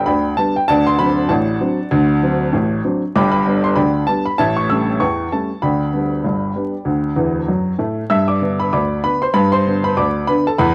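A woody, slightly detuned upright piano plays solo through this short, playful ragtime fragment, sitting up front and intimate with its action noise clearly audible. It moves in a jaunty, swung 2/4 over chords such as G, D7 and A7, spanning from deep bass notes to bright high treble, with a fill at 7.2 seconds leading into a new section at 8.1 seconds. Light reverb, cassette tone and vinyl crackle give the home recording a homespun, old-time character as it is cut from a longer piece.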